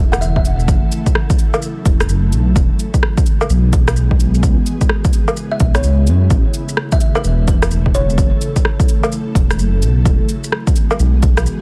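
Future garage at 128 BPM with a swung 4/4 feel, this ghostly, nocturnal passage cut from a longer piece rests on a deep, rumbling detuned saw bass pumping to the sidechain and a punchy, overdriven electronic kick, both up front, while a layered, overdriven kit of electronic rim click, shaker, woodblock and cabasa fills the groove. An ethereal, full-bodied pad holds sustained chords through A, F#m7, Eadd9 and C#m7, softened by ensemble chorus, phaser, its own reverb and 12-bit sampler grit. A woody, plucked kalimba melody with tape echo appears briefly at 0.1 seconds and returns from 5.5 to 8.2 seconds, all within a dense, heavily limited master dusted with vinyl crackle.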